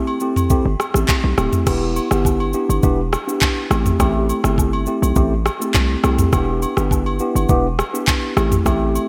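Hypnotic and sultry, this afrobeats excerpt rides a straight 4/4 groove, opening on a worn, slightly out-of-tune tine electric piano bathed in lush chorus that sways between minor seventh chords up front. Close acoustic agogo bells, woodblock, egg shaker and group handclaps come in, quickly joined by an electronic afro-pop drum kit with a knocking kick, handclaps, rim clicks, shaker, toms and crash cymbal, dressed in gated reverb, while a punchy, heavy 808-style bass with a sine tone, noise layer and fast attack drops in at 0.7 seconds. The bright 1980s-style digital production carries light reverb.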